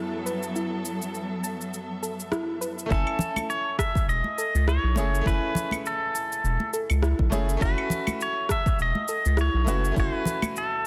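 A dense, heavily limited modern mix with light digital ambience carries this wistful sunset chillout fragment at 102 BPM in F# dorian, swung on the sixteenths and moving from B7sus4/F# to F#m7 and back to B7sus4. Bright grand piano with tape echo, a soft round pluck arpeggio with chorus, and electronic cabasa, rim click and claves with a lightly clipped snare open over smooth, vibrato-laden chamber strings, which drop out at 2.9 seconds. At that point an up-front, twangy pedal steel guitar takes the melody with slide, volume swells and gritty 12-bit sampler texture, joined by a round, dark analog bass, a deep overdriven electronic kick and close, dry congas entering at 3.2 seconds.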